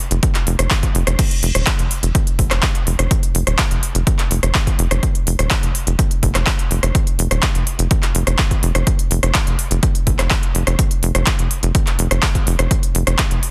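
A straight pulse drives this hopeful, euphoric progressive house passage, cut from a longer piece, with a punchy, overdriven electronic kick and a big-room dance kit of crisp hi-hats, handclaps, rim clicks and crash cymbal sitting up front from about 0.1 seconds. Underneath, a tight sequencer bass in the low register blends sawtooth and square-wave tones into a driving filter pluck with a fast attack and quick decay, pumping through sidechain compression. The sound is dry and dense, with a heavily limited modern master that keeps the groove forceful throughout its 13.5 seconds.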